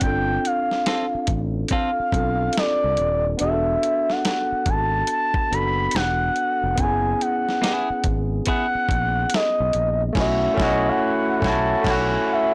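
A blown-out, overdriven recording with light reverb frames this soulful, introspective R&B and neo-soul excerpt at 71 BPM, swung on the sixteenths and moving through suspended ninth chords. A smooth, dark sawtooth synth lead with vibrato and chorus carries the melody over a barky, gritty tine electric piano played through a combo amp with lush chorus, a fingered electric bass with transformer saturation, and a dusty sampler-style drum kit with a thumpy kick and medium-tuned snare. A clean, picked electric guitar adds brief second lines at 0.9 and 7.6 seconds, and a band accent arrives at 10.2 seconds before a silent gap closes the cut.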